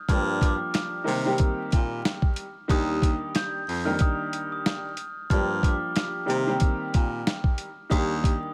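A lightly reverberant, vinyl-crackled sound frames this soulful, nostalgic boom-bap hip-hop excerpt in Eb major at 92 BPM, its 16ths swung, cycling through Gm7, Cm7 and Ebmaj7. Up front, a gritty, compressed, pitched-down sampler kit hits with a thumpy kick, high-tuned snare and hi-hat, while a woody upright piano comps beneath a bell-like, mellow glockenspiel melody played with rubber mallets, both filtered. A clear, close-miked baritone saxophone carries the bass line in a jazz style, with vibrato and scooped notes.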